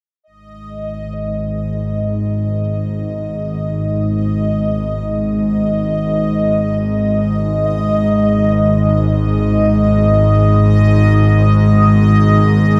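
Dark ambient drone in free time, dark and desolate, cut from a longer piece and bathed in a cathedral-like reverb. An up-front, string-like bowed drone with a tense, nasal sawtooth edge and vibrato sits low from 0.7 seconds, with a filter sweep running across it, while a bright, bubbling texture of resonant, randomly stepped filtering glints above through chorus and shimmer reverb. At 6.9 seconds a very quiet, deep pad enters with detuned sustained chords and a sub octave, adding moody weight in the middle register between the two.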